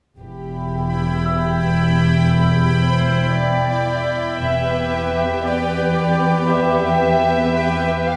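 Steeped in a roomy scoring-stage reverb, this eerie, mysterious cut from a suspense film score rests on one sustained chord in a slow, straight four. Veiled, con sordino violins carry the melody over dark, lush muted cellos placed up front and smooth-topped double basses, while a bright, bubbling sawtooth texture with resonant random filter steps, chorus and its own reverb holds long chords. A delicate, bell-like celesta sits in the background from 1.3 seconds, a second muted violin line enters at 4.4 seconds, and the double basses stop at 5.4 seconds.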